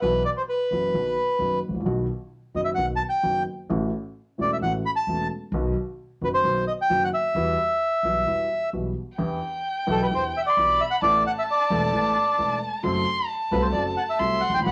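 A dark, reedy bandoneon carries the melody from the start over a worn baby grand piano with long sustain and a woody pizzicato upright bass, setting a passionate, tense tango in E minor at 131 BPM with a rubato feel. At 9.2 seconds a single bowed violin joins as a second line, its expressive vibrato, portamento and soft attack ringing up front beside the smooth bandoneon. Harmonies move from Bsus4 and B through A6 to Emadd9, Em7 and a closing F#dim, all inside a moderate studio reverb in this short cut from a longer piece.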